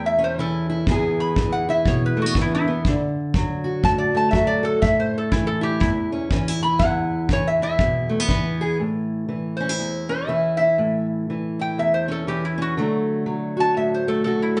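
A nasal, metallic resonator guitar, fingerpicked and played with a steel bar, carries the melody and takes a solo through the first 8.8 seconds of this soulful, laid-back acoustic country blues in A major at a swung 121 BPM, over a dark, woody, boxy parlour steel-string guitar fingerpicked on old strings, while a tight, smooth, rolled-off kick drum played with brushes sits in from 0.9 to 8.4 seconds, the sound set back in a wet studio reverb in this short cut from a longer piece.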